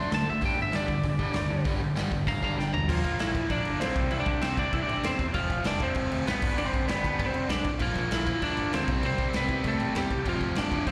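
A driving, straight 4/4 pulse at 196 BPM pushes this energetic, upbeat punk rock excerpt in C major, cut from a longer piece. A twangy, slightly broken-up lead guitar sits up front with slapback echo and delay, taking a solo over the first 2.9 seconds before a drum fill at 2.6 seconds launches the next section. Beneath it, a tight distorted guitar churns out a riff throughout, while a biting overdriven guitar plays its own riff from 0.0 to 2.9 seconds and returns at 7.8 seconds, both carrying a slapback echo. A growling picked electric bass with overdrive anchors the low end, and a raw garage drum kit, saturated and gritty with a punchy kick and a pumping stone-room sound, hits crash, hi-hat, snare and toms from the front. The whole thing has the feel of a live gig heard through the venue's PA, with a recital-hall reverb around it, as the chords move through Bb, C, F5 and G.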